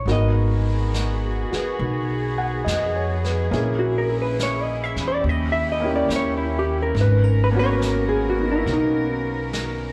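A dark, clean hollow-body jazz guitar carries the melody of this wistful, melancholic jazz ballad, soloing over a slow 70 BPM swing in G# minor and falling silent at 9.1 seconds. A concert grand with audible action noise accompanies, while a woody, growly pizzicato upright bass sits up front and a bowed cello section holds soft sul tasto chords with light vibrato through G#m9, A#m7b5, D#7b9 and G#m11. Brushes on a vintage kit with a rolled-off top keep time, and slapback echo on the guitar, piano and drums blends into the club reverb of a live gig heard through the venue's PA.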